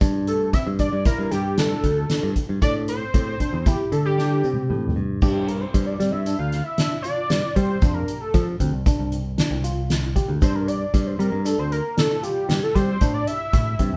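A fat, detuned analog lead with chorus and vibrato carries the melody from 0.3 s and takes a solo from 5.2 s, in this intricate, driving progressive instrumental piece in 5/4 at 115 BPM in G dorian. Bright tine electric piano arpeggios with tape echo sit beneath it, while a punchy picked electric bass holds down the low end and an up-front soft-mallet drum kit with a boomy kick and fat snare plays a drum fill from 4.2 s into the solo. A very quiet, grainy tube shaker adds texture, and the band plays live in one room with moderate reverb, cut from a longer piece.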